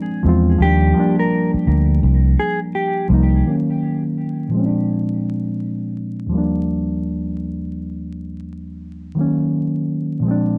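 This mellow, cosy lo-fi hip hop fragment moves with a lazy swung sixteenth-note feel in 4/4. A reedy, clean electric piano, heard through its built-in speakers and placed up front under a low-pass filter, carries the chords, drifting between Ebmaj9, Ebm7 and Bb7. A round, punchy fingered electric bass with a dark, amped tone sits prominently beneath it, while a mellow, fingered electric guitar offers a brief, soft melodic phrase shaded by a low-pass filter and tape echo. The guitar finishes by 3.1 s and the bass stops at 3.4 s, leaving the electric piano alone, and from 3.5 s a filter sweep reshapes its tone for the rest of the passage. Moderate studio reverb and a bed of vinyl crackle give the recording a snug, lived-in atmosphere.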